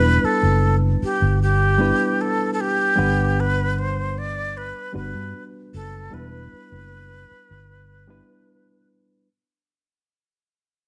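A straight 4/4 pulse at 76 BPM sets an unhurried pace for this lush 1970s-style soul passage in E minor, a cinematic and smooth fragment cut from a longer piece that fades out across its full length. A breathy jazz flute carries the melody up front, its metal tone soft in attack with vibrato, lifted highs and an unsteady line. Beneath it, a reedy, worn electric piano plays the accompaniment through its built-in speakers, clean but slightly out of tune. A vintage fingered electric bass sits up front too, its foam-muted, round, dark and amped sound anchoring the low end until it stops at 8.2 seconds, just before the flute ends at 8.9 seconds. The harmony moves from Em7 to Gmaj7 and back to Em7, all within a light, small-room reverb.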